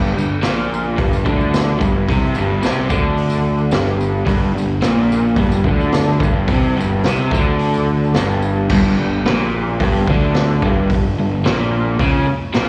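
Raw and swaggering, this garage rock excerpt struts at 109 BPM in a straight 4/4, with a crunchy, bright, double-tracked overdriven guitar riff carrying slapback echo up front over a growly fuzz bass, while a gritty raw drum kit with boomy kick and rolled-off top enters at 0.4 seconds, a jingly tambourine sits in the background until 8.6 seconds, and the whole performance comes across like a live gig heard through the venue's PA onto cassette tape, bathed in light recital hall reverb.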